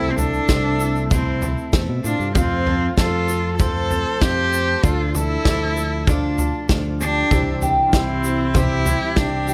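Indie folk with a hopeful, uplifting lift and a building arrangement, this excerpt places an expressive bowed cello up front, its melody carried on vibrato and portamento, while a close-miked trumpet plays a classical-style second line with light vibrato. Picked mandolin arpeggios with woody double strings, a bright archtop guitar with audible finger squeak in the background, a very quiet vintage upright piano, and a soft, flute-like tonewheel organ holding sustained chords through a slow rotary speaker fill out the middle, over a round, punchy fingered electric bass. From 0.2 s a natural small-room country drum kit with a punchy kick and medium-tuned snare enters together with a grainy tube shaker, all under light reverb as the chords move from Am/C through F and Dm to C.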